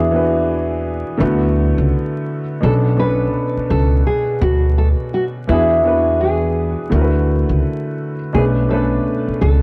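An up-front upright bass, plucked on gut strings, anchors this reflective, hazy hip hop excerpt with a thumpy, dark tone thickened by tube saturation, moving between B1 and E2. The piece sits at 84 BPM in 4/4 with a 62% swing on the sixteenths, in B dorian, and cycles through E7, D6 and Bm7 across its 9.6 seconds. An intimate upright piano, also close in the mix, carries the accompaniment with a boxy, woody character, long sustain and audible action noise, its sound softened by cassette tape and a low-pass filter. Over it, a fingerpicked nylon-string guitar plays the melody between E4 and B4, full-bodied and deeply classical in tone, with finger squeaks, a low-pass filter and tape echo. Light reverb and small room ambience frame a dry, gritty hardware recording dusted with vinyl crackle.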